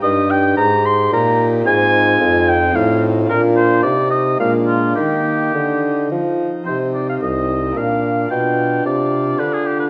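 A steady three-beat pulse at 110 BPM, played straight, carries this grave, solemn fragment of a baroque-style sonata movement with continuo, cut from a longer piece. An oboe with light vibrato and a vintage tone sings the melody up front, ranging from F4 to C6, while a present bassoon, also with light vibrato, holds the bass line between C2 and F3. A pipe organ on a nasal cornet solo stop fills in the accompaniment in baroque voicing, spanning C2 to G4. All three parts play throughout, from 0.0 to 9.9 seconds. The harmony opens in Eb major and turns to C minor at 6.7 seconds, settling on a G7 chord over B, with the ensemble tuned to A4 = 437 Hz. A wet recital hall reverb of about 1.5 seconds and a dark, warm production lend the sound a resonant depth.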